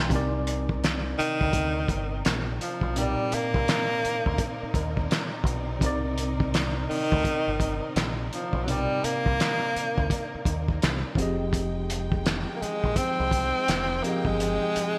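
Bright, 1980s-style digital production bathed in a lush hall reverb frames this late-night, introspective neo-soul and R&B excerpt, which moves with a swung sixteenth-note feel. A muffled, cloth-damped drum kit with fat snare, tight kick, hi-hat and handclaps sits up front under gated reverb, alongside a round, punchy dub bass, a worn, slightly out-of-tune tine electric piano with light overdrive, and a bowed string section holding sustained chords with portamento in the background. At 1.2 seconds a breathy, whispered tenor saxophone enters up front with vibrato and digital delay, carrying the melody as the harmony shifts from Cm9 to Fm9 at 11.2 seconds.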